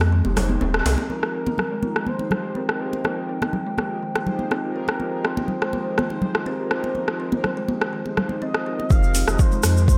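This excerpt from a longer afro house track moves at 123 BPM in a straight 4/4, hypnotic and earthy in F minor, opening on an Fm11 chord. An up-front, electronic afro-pop drum kit with metallic, low-passed hats and rim click runs to 9.7 seconds, joined by close, dry congas with hard hands and, for the first second only, a deep djembe sitting soft in the background. A round sine sub bass pumps under the sidechain at the start and returns at the drop at 8.9 seconds, when a deep, up-front electronic kick and a grainy, bright egg shaker arrive. Woody, ringing kalimba arpeggios run through the whole clip under delay and a filter sweep, while dim, detuned synth brass stabs with chorus and delay hover behind them. From about 1 second a smooth, expressive sawtooth lead carries the melody with vibrato and delay, and a moody, nasal analog pad with slow attack swells into sustained chords under its own filter sweep. 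Plate reverb and small room ambience soak the mix in a dreamy haze.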